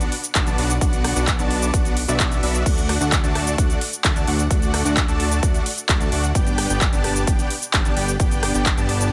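A thick, detuned supersaw riff opens this euphoric, uplifting festival progressive house excerpt at 130 BPM in D major, sitting up front with a huge sawtooth unison sound colored by cassette tape grit, sidechain pumping and dub echo, ranging from A3 to A5. Underneath, a fat analog bass plays from G1 to D2, its saturated, detuned sawtooth tone carrying a filter pluck and pumping with the sidechain. A big-room dance drum kit runs throughout with crash cymbal, handclaps, metallic hi-hats, rim click and shaker, all overdriven and placed up front. A punchy, layered electronic kick drum enters at 0.4 seconds and stops at 8.8 seconds. The harmony moves from Bm to D at 2.7 seconds and on to G at 6.4 seconds, all set in a light reverb within this short clip from a longer piece.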